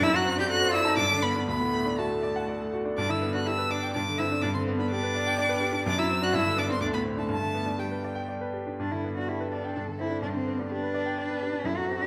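Spirited and graceful, this quick classical-period movement for piano trio moves at 124 BPM in 3/4 and stays rooted in G major, with harmony circling between G and D7 in this excerpt cut from a longer piece. Up front, a focused, vibrato-rich violin carries the bowed melody with a smooth top, while a soft-attacked cello sings an expressive second line with portamento, and a clear grand piano with a vintage tone and long sustain supplies the accompaniment. The trio plays together throughout the 12.1 seconds, bathed in the wet reverb of a recital hall, and the opening phrase returns at 8.8 seconds.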